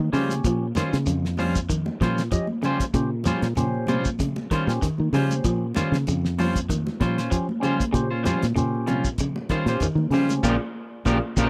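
Bright, clean electric guitar stabs sit up front in this defiant, intense afrobeat excerpt, which moves at 96 BPM in 4/4 with a light sixteenth-note swing in Bb dorian, resting on a single Bbm69 chord. A second electric guitar, twangy and slightly broken-up with spring reverb, picks arpeggios low in its range, while a barky tine electric piano, lightly overdriven through a combo amp and treated with phaser, fills in the accompaniment. The fingered electric bass is punchy and foam-muted, anchoring the groove from the very start. A damped 1970s drum kit with a fat snare and tight kick drives the beat on hi-hat, kick and snare, joined by a grainy, mellow shekere and thin-skinned, high-tuned congas struck with hard hands in the background. The dry, close studio sound carries light reverb, and the full band hits an accent at 10.4 seconds before the cut at 11.5 seconds.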